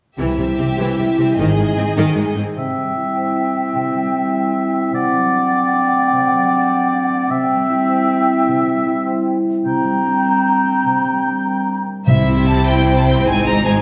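A heroic, adventurous film-score excerpt in a straight 6/8 at 101 BPM, in C lydian, opens at 0.2 seconds with a rich, intense violin melody carried by bowed string sections: a lush second violin line, background violas, and cellos and double basses on the bass, all over mellow French horn chords and the ringing, thumb-plucked arpeggios of a concert harp that runs throughout. From 2.6 seconds the strings and horns give way to a build-up in which a clear, up-front oboe, an airy, hollow flute and a distant, roomy clarinet weave second lines over the harp. At 12.1 seconds the strings return, joined by a close timpani stroke on medium mallets, all bathed in the reverb of a recital hall.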